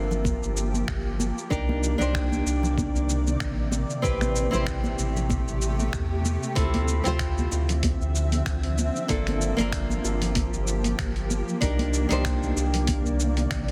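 A fingerpicked flamenco guitar with tape echo accompanies this relaxed sunset chillout excerpt, set over a round, deep sub bass and a shimmering, detuned ambient pad that swells in with a slow attack through chorus and its own reverb. A gritty, tape-warm sampler-style kit of cabasa, finger snaps and hi-hat, with soft clipping on the snare, rides a gently swung groove, while a thumpy electronic kick and soft-handed congas and bongos sit in the background. Minor seventh and ninth chords drift by under light reverb and a dense, heavily limited modern master.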